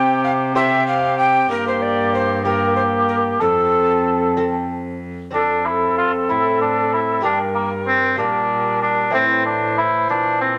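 From the first moment, a renaissance-style consort dance for five players begins together: an alto recorder carries the melody while a dark cor anglais sings a second line just beneath it, over a delicate fingerpicked lute, a trombone and a bowed cello. The mood is solemn and courtly, moving at a stately 63 beats per minute in a straight 6/8, with harmony passing through G minor and F before reaching A minor near the close. The recorder has an airy wooden tone with a crisp, chiffy attack, lifted highs and expressive vibrato. The cor anglais sits up front with a vintage, lightly vibrato sound, and the trombone adds a smooth-topped, warm voice, also with light vibrato. Underneath, a single cellist gives a rich, reedy gut-string bass heard close, while the double-strung lute stays in the background. A moderate stone-room reverb surrounds the consort, and the passage shifts into a second section at 5.3 seconds before this cut from a longer piece ends around 10.6 seconds.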